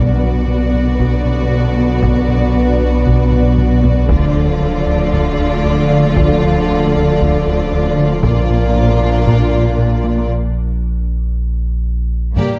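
A tense, brooding hybrid orchestral and electronic film score cue at 116 BPM in 4/4, cut from a longer piece and moving through Bm, Dm and Bb. The violins carry a smooth, vibrato melody on D5 over a lush second violin line, while dark, woody violas, distant cellos and very quiet double basses fill the lower strings. A very quiet, glassy FM pad with a slow attack and long release sustains chords alongside mellow, roomy French horns and trombones, which drop out at 10.3 s along with the double basses. Up front, a punchy sine sub bass with a pitch-drop attack anchors the low end, and a rubbery, hollow square bass riff with a filter pluck sits in the background. A close, dry taiko ensemble enters very quietly at 1.0 s, plays a fill around 3.3 s, and the cue ends on a band accent and impact with an electronic sub drop at 12.4 s, all within a moderate scoring stage reverb and a dark production.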